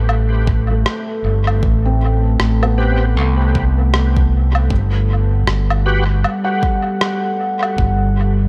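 The mix is fairly dry, with the overdriven fingered electric bass sitting up front in a short ambient dub passage cut from a longer piece. At 78 BPM in 4/4 with a swung sixteenth feel, the mood is meditative and spacious, and the harmony moves from Am9 to Gmaj7 at 4.7 seconds. A deep, moody pad of sustained chords, built from sawtooth and sine layers with a sub octave, wave-folding and ring modulation, fades in slowly and carries chorus and its own reverb. A muffled, compressed sampler-style woodblock and rim click is coloured by studio reverb and dub echo, while a layered electronic kick, re-recorded in a small room, adds depth. A felt-muted upright piano plays soft, intimate arpeggios with audible action noise and tape echo. Between 2.8 and 6.0 seconds a gritty, thick tonewheel organ adds stabs, with chorus vibrato, a slow rotary speaker and dub echo.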